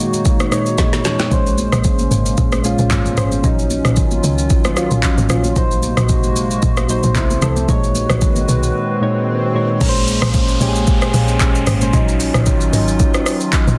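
Amapiano in B-flat minor at 113 BPM with a deep, soulful mood, built on soft, round electric-piano-like synth keys with chorus and a hollow, flute-like pad in the background, while an overdriven, up-front drum kit of deep kick, woody snare, metallic hats, claps, rim clicks, shaker and crash joins at 0.1 seconds with very quiet bright congas, a punchy log drum bass arrives at 1.3 seconds, and a swell rises from 8.3 seconds into the drop at 9.8 seconds in this dense, heavily limited excerpt from a longer piece.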